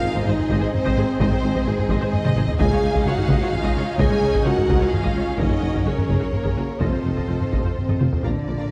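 Cinematic, epic orchestral film score in 3/4 at 128 BPM, relentless and dramatic, moving through Ab, Dbadd9, Gbadd9 and F7 in this short cut from a longer piece. Bowed violins carry a lush, vibrato-rich melody over a softer second violin line, focused violas, a close, rich string section holding chords and mellow French horns sustaining harmony, while cellos, a distant, very quiet double bass section and a soft-attack tuba anchor the bass. An up-front taiko ensemble struck with heavy sticks drives from 0.2 seconds, with fills at 2.2 and 7.9 seconds, all set in a dark production with moderate scoring stage reverb.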